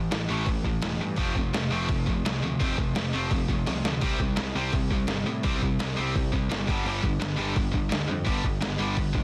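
Punk rock at 169 BPM in a straight 4/4, angry and raw, heard as a short cut from a longer piece. Two bright, distorted electric guitars play picked riffs from the first second: a tight one sits up front while the other, more compressed, stays in the background. A dark, round fuzz bass, picked and overdriven, adds a punchy low end beneath them. A lo-fi, sampler-style drum kit enters at 0.1 seconds, pitched down and muffled, with a thumpy kick, medium-tuned snare, hi-hat and splash cymbal, and a tape-warm tone placed up front, with a drum fill at 3.7 seconds. The harmony moves from A5 to F, then C5 at 4.0 seconds and G5, all in a dry, dense, heavily limited master with audible lossy compression artefacts.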